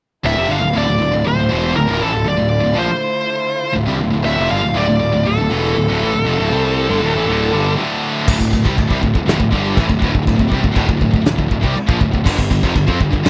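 A growly, fuzz-soaked electric bass sits up front through this relentless, epic heavy metal passage in D minor at 120 BPM, cut from a longer piece. Two bright, high-gain distorted rhythm guitars hold a riff in the background, while a warm lead guitar carries the melody up front with slapback echo until about 7.7 seconds. Beneath them, a very quiet string section adds lush, bowed sustained chords with a biting, focused edge and vibrato, ending around 8.2 seconds. After a short break, a punchy acoustic drum kit with a pumping room sound, a medium-tuned snare, crash and china cymbals enters at 8.3 seconds, driving the section as the harmony moves from D5 to G5. The sound is dry and close, with little reverb, giving the heavy layers a tight, immediate presence.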